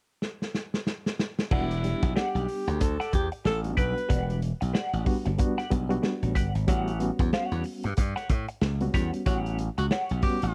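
A 93 BPM swung funk groove in E dorian opens with a gritty, saturated breakbeat drum fill before slap bass, wah-and-chorus clean electric guitar, reedy fast-tremolo electric piano stabs and a whispered, subtoned alto saxophone (1.5-4.4 s) settle into a hypnotic, driving vamp over Em9 and A13, with a breathy tenor saxophone joining the band accent at 9.3 s in this dry, close 1970s-style studio cut from a longer piece.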